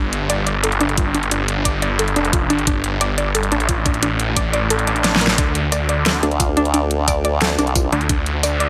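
A snarling, distorted saw bass growls up front through this dark technical drum and bass excerpt at 177 BPM in 4/4, its detuned unison sawtooth tone bright and resonant as it pumps against the sidechain. Above it, a warbly, dusty pluck plays arpeggios with a lo-fi, nasal character, coloured by chorus and digital delay, over harmony that rests on Gsus2. A layered, overdriven dubstep drum kit drives the track with hi-hat, rim click, tambourine and a huge snare, joined by a knocking electronic kick from 1.0 seconds. A very quiet electronic swell sits beneath a drum fill at about 5.0 seconds. At 6.2 seconds a saturated, chorused formant-sweep wobble bass joins up front, sharpening the mechanical, aggressive mood within a light digital ambience.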